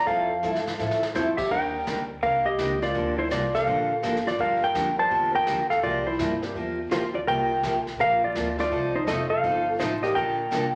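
A clean, dark lap steel guitar carries the melody from the start, compressed and up front, with a woody, thumpy pizzicato upright bass on gut strings underneath. This playful western swing cut moves at 167 BPM in 4/4 with an eighth-note swing in F major. A brushed vintage drum kit, mid-forward with dark cymbals and a rolled-off top, plays a fill between 0.4 and 1.1 seconds. A boxy, picked parlour acoustic guitar with fresh strings supplies accompaniment, and a bright, brilliant upright piano joins at 1.1 seconds, sitting in the background. Jazzy chords such as Fmaj7, Ebmaj7, Gm7 and C9sus4 pass under the melody, while a large studio reverb and a layer of vinyl crackle color the recording.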